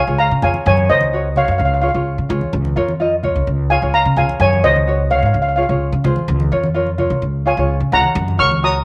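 A straight, even 4/4 calypso groove drives this festive, bouncy excerpt cut from a longer piece. Up front, a lead steel pan carries the melody, struck with soft rubber sticks for a shimmering, airy, mellow tone. A fingerpicked tenor ukulele adds light acoustic accompaniment beneath it, while a woody, growly pizzicato upright bass on steel strings thumps solidly at the front of the mix. Low-tuned, thick-skinned congas played with soft hands sit in the background from 0.4 seconds, with a drum fill at 6.9 seconds. The harmony moves between Db and Gb, colored by Bbm/Db, Gbadd9 and Dbmaj7, all framed by a small room ambience and moderate spring reverb.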